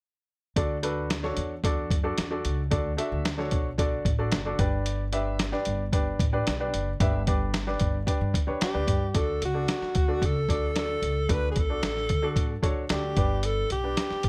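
Uptempo 1960s-style soul in D major at 112 BPM, joyful and warm, moving between D and G chords in a dry, close sound. An intimate upright piano with audible action noise and short sustain sits up front beside a woody pizzicato upright bass and a muffled, compressed lo-fi sampler-style drum kit, pitched down and re-recorded in a large room, with a thumpy kick and a tape-tinged feel. At 8.6 seconds a breathy, close-miked alto saxophone enters with a clear, jazz-style solo full of vibrato that carries the excerpt to its end.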